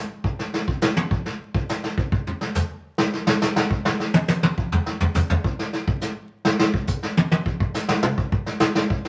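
A vintage brush drum kit enters at 0.2 s and carries a relaxed, swinging jazz drum solo across hi-hat, snare, toms and kick, its punchy kick and medium-tuned snare sounding roomy, distant and rolled-off within moderate studio reverb, with vinyl crackle adding an aged surface to this short cut from a longer piece.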